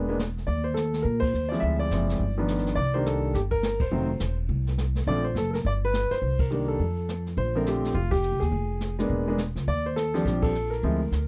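A warm concert grand piano carries the melody from the first moment, its tone smooth and vintage with a deep low end, sitting up front between D3 and E5. This is a swinging, playful jazz piano trio in Bb major at a brisk 209 BPM in 4/4, with a light swing on the eighth notes. A pizzicato upright bass, woody and steel-strung, sits close beside the piano and covers the low register from E1 to Bb2. A brushed drum kit joins at 0.2 seconds, its dark cymbals, medium-tuned snare and boomy kick sounding natural in a small room, a little further back than piano and bass. The harmony moves through rich changes such as Dm7b5, G7b13, Cm9 and Bbmaj9, with band accents landing together at points like 1.2 and 8.1 seconds, and the tune restarts its phrase at 7.4 seconds. The dry, close studio sound has a 1970s character, and the clip is cut from a longer piece, ending at 11.3 seconds.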